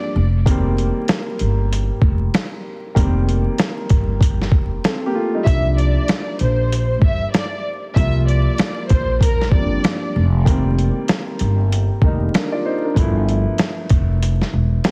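Vinyl crackle and a heavily compressed, radio-like sound frame this nostalgic, soulful boom-bap hip-hop cut at 96 BPM, its 16ths swung. Up front, a pitched-down, gritty sampler drum kit with twelve-bit grit and a thumpy kick joins a woody, growly pizzicato upright bass, while a filtered, vintage grand piano with short sustain moves through suspended ninth chords before landing on a G13. A lush, bowed violin section with vibrato and tape echo carries the melody from 5.5 to 10.0 seconds, and the kick drops out at 14.2 seconds.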